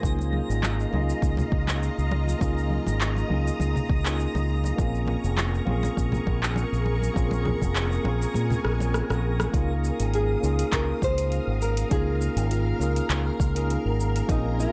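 A punchy, bright fingered electric bass with an envelope filter sits up front in this smooth, blissful sunset chillout piece, cut from a longer track and carrying a gentle sixteenth-note swing. Beneath it, an overdriven electronic kick and a deep house kit with metallic hi-hats, handclaps, rim clicks and shaker are layered and re-recorded in a large room, while ringing, hard-handed congas play close but in the background. A clean tine electric piano heard through its built-in speakers provides the accompaniment with digital delay. A silky vintage string machine holds sustained chords with ensemble chorus, and a twinkling granular texture adds an octave-up shimmer in the background with its own reverb. The kick drops out at 8.4 seconds for a drum fill, and at 10.2 seconds a dark, fingerpicked classical nylon-string guitar enters with the melody, finger squeaks audible under its delay. The whole mix sits in a light digital ambience over rich Db69 and Bbm9 harmonies.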